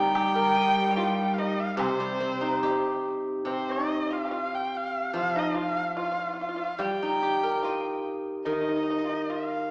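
Wistful and tender, this unhurried 72 BPM Chinese traditional chamber excerpt in a loose, rubato 2/4 sets a warm, expressive erhu melody, bowed up front with vibrato, portamento and a soft, boxy attack, over a bright, silvery steel-string zither ringing under fingerpicks, a dry, percussive fingerpicked pipa, a dark, smooth bowed cello that stops at 3.1 seconds, and a very quiet, close woodblock heard only until 2.8 seconds, all set in a wet recital hall reverb that places the listener further back with a small speaker sound.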